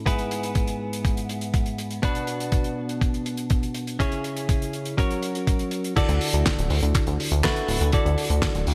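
A bright, twangy clean electric guitar opens this danceable, bittersweet italo disco excerpt at 122 BPM, playing picked stabs with vibrato and digital delay over chords moving from E/G# through Bm, C#m and F#. A thumpy, sampler-style electronic kick and a dry, damped 70s kit with a fat snare, hi-hat, handclaps and crash carry the straight 4/4 groove in a small room. At 6.1 seconds, as the harmony settles on Dadd9, a glossy, nasal chorused synth bass enters up front with a fast, plucky attack.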